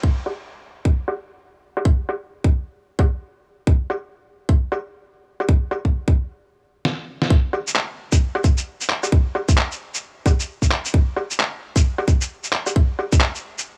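This future garage excerpt moves at 132 BPM in 4/4, with a 60% swing on the sixteenths that gives the beat a loose, shuffling feel and a melancholic, rainy mood. An electronic kick drum anchors the groove, tight, layered and produced, sitting up front in the mix. Over it, a sampler-style kit of woodblock, snare, shaker and handclaps enters at 0.3 seconds; these sounds are compressed, pitched down and muffled behind low-pass filtering, with a medium-tuned snare and a tape-warm tone. A filter sweep runs across the drums through the opening passage, until the beat breaks off at 6.4 seconds and a short drum fill leads into the second section at 7.3 seconds. The recording is dry and gritty, with little reverb, which keeps the percussion close and intimate.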